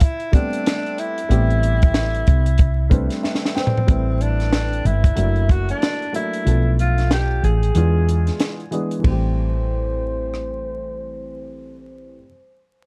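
A swung 4/4 groove from a compact, dry cocktail drum kit with dark cymbals, a high-tuned snare and a punchy kick sits up front in this mellow, smoky jazz-hop excerpt, with a drum fill at 3.2 seconds, the kick dropping out at 6.5 seconds and the kit stopping at 10.5 seconds. A round, hollow-body fretless electric bass anchors the low end, while a worn, slightly detuned upright piano with audible action noise and long sustain adds filtered chords and a fill beneath a breathy tenor saxophone. The sax carries the melody with soft attack, scooped notes, vibrato and whispered subtone, sounding distant through tape echo and a low-pass filter, all framed by a dark, close production with vinyl crackle and a filter sweep through the middle section.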